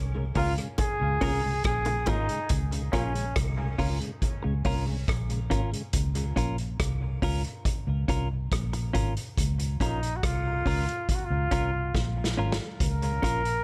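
A straight 4/4 groove at 70 BPM drives this hazy, laid-back dub reggae passage in Db major, cut from a longer piece and resting on a Db6 chord. A vintage drum kit sits up front with a punchy kick, medium-tuned snare, rim click and hi-hat in a small, pumping room, its top rolled off, and it plays a fill from 11.9 to 12.8 seconds. Beneath it, a dark, round, foam-muted fingered electric bass carries the low end, while very quiet bongos, tight, high-tuned and close, add hard-handed accents. A clean, compressed electric guitar with dub echo fills in the accompaniment, joined briefly by a deep, detuned sawtooth chord stab with a phaser and a fast-attack, decaying filter pluck, and by a mellow tonewheel organ with key click and slow rotary speaker sitting in the background. Over the top, a clear flugelhorn with vibrato and dub echo sings a pop-style solo, dropping out after its opening phrase and returning at 9.8 seconds to carry the passage to its close.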